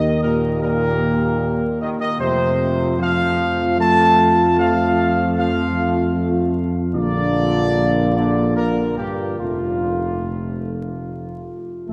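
Triumphant and solemn, this brief classical brass passage in 3/4 at 76 BPM, in F mixolydian, sets a dark, tightly played trumpet section's up-front melody over sustained chords from a warm, lightly vibrato-tinged French horn section and a bright, close-miked trombone section sitting in the background, all anchored by an up-front, smooth-topped tuba bass, bathed in a cathedral reverb of 4.8 seconds with vinyl crackle as the harmony moves from Eb to F, then Bb at 7.0 seconds and back to F.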